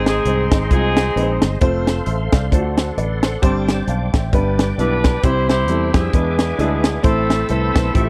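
A dry, close studio sound with a 1970s feel and small-room ambience frames this short cut from an uptempo gospel piece at 133 BPM in 4/4, swung on the eighths, with a reverent yet jubilant mood. Up front, a crisp fusion drum kit with a high-tuned snare and punchy kick drives hi-hat, kick and snare, while a round, foam-muted fingered electric bass holds the low end. An intimate grand piano with audible action noise accompanies throughout, and a reedy tonewheel organ, softer in the mix, sustains chords through a slow rotary speaker with chorus vibrato and key click. A vintage jazz-style saxophone section carries the melody with light vibrato, sounding briefly at the opening and returning from 4.8 seconds over a progression that runs from Ab through D7 and Gsus4 to E7 and Am.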